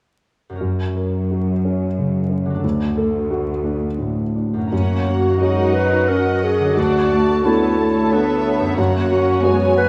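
An intimate grand piano sits up front, its action noise audible, as it accompanies a tender, moving cinematic passage in a rubato 3/4, with fingerpicked concert harp arpeggios ringing in the background and a veiled, muted cello section carrying the bass from 0.6 seconds. At 4.7 seconds, dark con sordino violins take up a second line while distant, lush violas fill in behind them, and at 5.1 seconds a warm, classical-style solo clarinet adds another line. A moderate scoring-stage reverb and a layer of vinyl crackle surround the ensemble.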